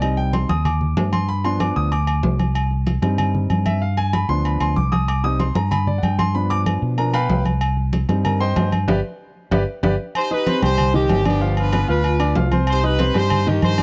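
This dry, close studio recording has a 1970s feel, with studio reverb. It is a fiery, danceable salsa at 190 BPM in 4/4, cut from a longer piece and set in C harmonic minor, where the harmony swings between C minor and G7. An intimate grand piano with audible action noise takes a solo over the groove, supported by an amped, up-front fingered electric bass, damped congas with a thick skin and soft hands, and ringing metal agogo bells and timbales. The band hits an accent at 8.9 seconds, and a drum fill follows at 9.7 seconds. At 10.2 seconds a punchy, pop-style horn section enters with the melody, clear and up front with vibrato.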